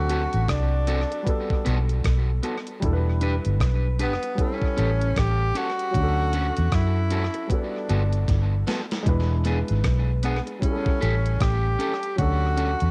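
A clear, punchy tenor saxophone sings a longing, vibrato-laden lead through tape echo over a smooth lovers rock reggae groove, anchored by a dark, round, foam-muted electric bass and an up-front, thumpy gated 80s drum machine that drops a fill at 8.3 seconds, while an intimate baby grand piano with audible action noise and a twangy, slightly broken-up electric guitar adding stabs through spring reverb fill out this cassette-toned home recording cut from a longer piece.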